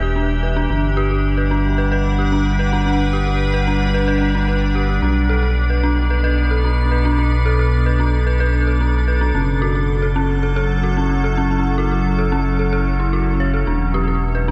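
A straight 4/4 pulse at 111 BPM carries this cerebral, intricate IDM excerpt, which is cut from a longer piece and moves through Em7, Gmaj7, Bm7 and F#m7 before returning to Em7 at 13.7 seconds. A rubbery square bass sits up front in the low register, its hollow, bouncy tone shaped by a resonant filter pluck and tube saturation. Above it, an icy glass pad holds sustained chords with a slow attack and long release, its crystalline, airy sheen thickened by chorus and roughened by vintage 12-bit sampler grit. A dark detuned synth bell plays arpeggios in the middle register, its eerie, inharmonic FM strikes decaying into chorus, delay and the same gritty sampler texture. All three parts play throughout, and the dreamy mix is soaked in a lush hall reverb.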